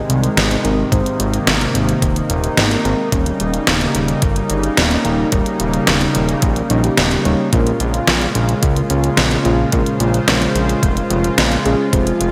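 Dreamy and nostalgic, this synthwave excerpt moves at 109 BPM in a straight 4/4, built on a smooth, detuned supersaw holding sustained chords with a sidechain pump. Beneath it sit a fat, saturated analog bass with an evolving filter sweep, a thumpy sampler-style electronic kick entering at 0.9 seconds, and an up-front pop kit whose deep, overdriven snare and hi-hat are bathed in gated reverb. A dark, round FM electric piano adds stabs in the background through chorus, delay and cassette-tape coloring, while a lush hall reverb and bright 1980s-style digital production carry the chords from Ab through Eb7 to Bbm7.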